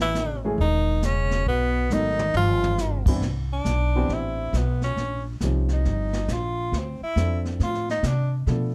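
A clear tenor saxophone with vibrato, subtone, scooped notes and plate reverb opens this relaxed small-group swing-and-bop fragment at 137 BPM alongside a mellow, close-miked trombone, a woody pizzicato upright bass and a distant brushed kit with dark cymbals, while an intimate baby grand piano with audible action enters at 0.4 s, a drum fill arrives at 1.9 s, and the trombone stops at 3.0 s just before the saxophone takes its solo in C major over a warm production with light reverb.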